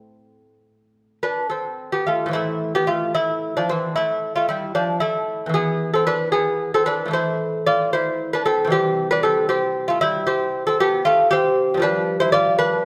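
A moderate recital-hall reverb surrounds a solo lute, placed up front so its delicate gut strings sound close and intimate. The piece is a classical, baroque-style dance in 12/8, played with a flowing rubato that gives it a solemn, unhurried bearing. The fingerpicked lute rings with double strings, some of them octave-doubled, spanning a range from a deep E2 up to D5. The harmony moves from A minor to E5, back to A minor, then to C, before arriving on G5 at 11.8 seconds. Heard as a short excerpt cut from a longer piece, the passage shifts into a new section at 2.3 seconds and carries on to its close at 12.8 seconds.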